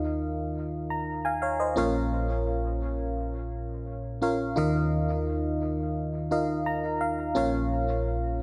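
A dark, plate-reverberated sound frames this urgent, moody pop fragment at 86 BPM in straight 4/4, tuned to A4 = 436 Hz, where a solo FM electric piano sits up front with a glassy, bell-like attack, a noise layer and decaying tones treated with chorus and tape echo, spanning Bb1 to Bb5 as it moves between Ebsus2 and Bbm and adds a fill from 6.3 to 7.4 seconds before the clip cuts off at 8.4 seconds.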